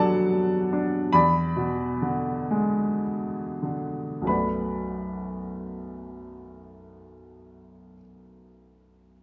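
Reflective and wistful, this brief classical fragment from a longer piece sets a lone upright piano, bright, woody and up front, in B dorian at a slow, rubato 29-54 BPM in 6/8, slowing through its opening 4.3 seconds as Bm7 moves to E7 and back, all bathed in the wet reverb of a recital hall.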